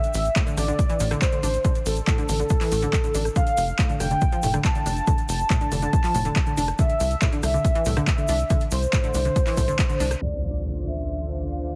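A punchy, up-front electronic kick drives this uplifting trance excerpt at 140 BPM in a straight 4/4. It is backed by a layered, overdriven big-room kit of crash cymbal, handclaps, metallic hi-hats and rim clicks, with a grainy egg shaker sitting close and dry in the background. Underneath, a tight sawtooth sequencer bass pumps with the sidechain, while a round, detuned analog pluck spins arpeggios through chorus, cassette-tape colour and digital delay. Above them a velvety synth lead carries a second line with soft attack, vibrato and chorus, giving the D minor progression of Am, Fadd9 and C an emotional, soaring lift. The kick drops out at 9.9 seconds, and at 10.2 seconds an electronic impact and a filter sweep usher in a floating, bowed string section on a Dm7 chord. The mix is heavily compressed, with a radio-like, low-pass-filtered sound and light digital ambience.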